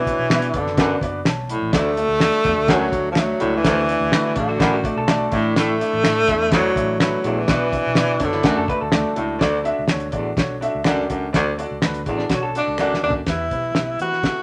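A breathy, whispered tenor saxophone carries the melody up front in this joyful, danceable 1960s-style soul piece, its scooped notes and vibrato giving it an intimate, jazz-inflected voice. It drops out at 8.7 seconds, where the upright piano slips in a brief fill, and returns at 12.6 seconds. Beneath it, a vintage baritone saxophone with a soft attack plays a low riff, while the woody, open upright piano supplies the accompaniment. A cloth-damped drum kit sits dry and close, with a fat snare, tight kick and rolled-off top, and adds a fill just before the closing section; a dark, round, foam-muted electric bass anchors the low end. An electric guitar through a small old amp, slightly broken-up and compressed, picks a riff in two stretches, a very quiet finger snap adds a small-room touch, and the straight 4/4 groove moves from Bm and D through Asus4 before landing on Em, all framed by moderate studio reverb.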